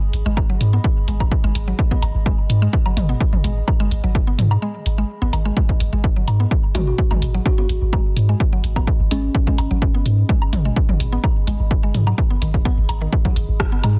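Dense and heavily limited with a digital ambience, this quirky, clinical minimal techno excerpt in G# minor moves at 127 BPM, with an up-front electronic kick, a tape-warm analog drum machine of hi-hat and rim click, and a deep, pumping sine sub bass beneath a warbling, lo-fi tape-like pad that fades in from the background, while a woody FM mallet-like synth pluck riff with chorus and tape echo, overdriven electronic woodblock and toms, a brief break from 4.6 to 5.6 seconds, and a mellow, airy kalimba melody from 6.8 to 9.5 seconds add playful detail.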